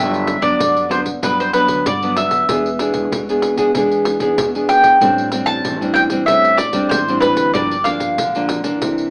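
Samba and choro come together in this joyful, festive fragment cut from a longer piece, moving at a straight gait in four. An acoustic mandolin carries the melody up front, its picked double strings sounding woody, and it drops out at 8.4 seconds while the others carry on. A fingerpicked nylon-string guitar, warm and classical in tone, shares the foreground with accompaniment over a progression that runs from Gmaj7 through E7 and Am7 to Gm7. Beneath them, a dark, thumpy upright bass with gut strings plays pizzicato in the background. A jingly pandeiro, close and dry with hard hands, enters at 0.1 seconds, and the whole sits in a moderate studio reverb with the narrow, boxy character of AM radio.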